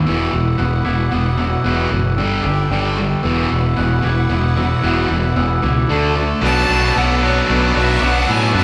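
A large studio room with moderate reverb frames this brooding, melancholic post-rock excerpt in 3/4 at 113 BPM, its band playing live together as a build-up runs through Esus2, G5 and D5 chords before settling on Bm7 at 6.4 seconds. Up front, a thick fuzz guitar drives the riff over a growling, overdriven fingered bass, while a very quiet, twangy clean guitar and a soft glockenspiel struck with rubber mallets ring out arpeggios, and a lush, distant symphonic string section holds sustained chords in the background. At 6.4 seconds a close, smooth solo violin with vibrato takes up the melody and a tight distorted guitar joins with its own riff in the background.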